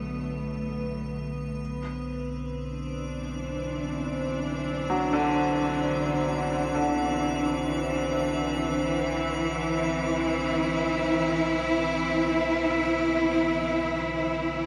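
An icy, crystalline glass pad fades in alongside a rich, up-front bowed cello section holding sustained chords through shimmer reverb and a deep, ominous rumbling drone, shifting from Bm to Cadd9/B in this unsettling, desolate dark ambient excerpt in free time, before a bright grand piano with audible action noise enters at 4.9 s playing arpeggios through diffuse ambient delay, inside a huge, wet reverberant space.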